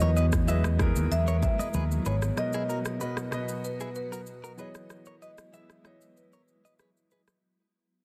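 A straight 4/4 afrobeats groove sets a sunny, breezy mood, driven by an electronic afro-pop kit with a deep kick, rim click and shaker, joined by punchy fingered electric bass up front and very quiet, high-tuned congas that drop out at 1.9 seconds, with the bass following at 2.3 seconds. A marimba with medium mallets carries the melody through digital delay, a bright, compressed clean electric guitar picks a delayed riff, and a polished grand piano accompanies, while a blurred granular cloud pad holds sustained chords in the background with its own reverb. This short cut from a longer piece fades out throughout and thins into a break from 4.9 seconds, in a small room with a dense, heavily limited modern master.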